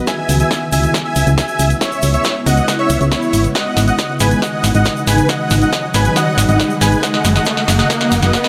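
A dark, lightly reverberant production with a faint mains hum carries this bittersweet, euphoric uplifting trance build-up in C# minor at 138 BPM, where a huge, detuned, compressed supersaw melody sits up front with sidechain pumping and delay over a round, mellow FM bass, while a heavy layered kick in the background, a techno kit with a punchy snare and tape-warm hats running a drum fill, a grainy, bright egg shaker, and a riser entering at 5.8 s push the chords from C#m7 through G#sus4 to F#m.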